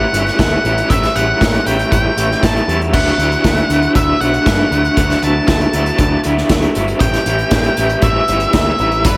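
Indie rock with a wistful, jangly mood, this short excerpt is cut from a longer piece and moves in a straight 4/4 feel. An electric guitar through a small old amp carries the riff, its dark, slightly broken-up tone sitting up front with a lo-fi edge and a tremolo effect. Above it, an octave-fuzz lead guitar plays the melody with a distorted, fuzzy bite, thickened by distortion and a slapback echo. A growling picked electric bass gives a warm, overdriven low end, while an unplugged acoustic drum kit enters at 0.1 s with a punchy kick, a medium-tuned snare, hi-hat and crash cymbal played with bundle sticks. The harmony moves from A7 to Dadd9 at 2.9 s and returns to A7 at 7.0 s, all set in a lush hall reverb that lends a big arena sound.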